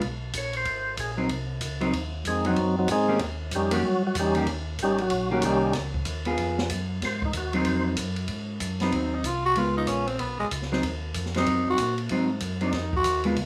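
Soul jazz organ trio at a brisk 189 BPM swing in Ab mixolydian, greasy and soulful, cut from a longer piece and heard through a rough home demo mix with small room ambience. A mellow, round tonewheel organ carries the bass line through a slow rotary speaker beneath an open jazz kit with dark cymbals, a high-tuned snare and a boomy kick, while a dark, clean hollow-body guitar comps up front from 1.2 seconds. A percussive organ with key click takes the first solo until 7.8 seconds, then a raspy, growling tenor saxophone with scooped notes steps forward at 8.8 seconds.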